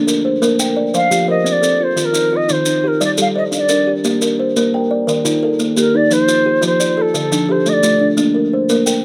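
A 12/8 cycle at 116 BPM, counted in dotted quarters with a straight feel, drives this warm, hypnotic fragment of southern African traditional music built on an mbira-style interlocking pattern. Two kalimbas play arpeggios throughout: one is woody and thumb-plucked, ringing and dark up front, while the other is softer, with short, airy fingertip plucks and a slapback echo. Grainy maracas enter at 0.1 seconds and sit distant, as if in a large room. A Native American-style cedar flute carries the melody from 0.9 to 8.1 seconds, hollow and mellow, with a soft attack, gentle vibrato and its own slapback echo. The harmony moves through Bb, F, Eb, Gm, Bb, Eb, F and Dm before returning to Bb, and the whole piece sits in light reverb with an outdoor feel.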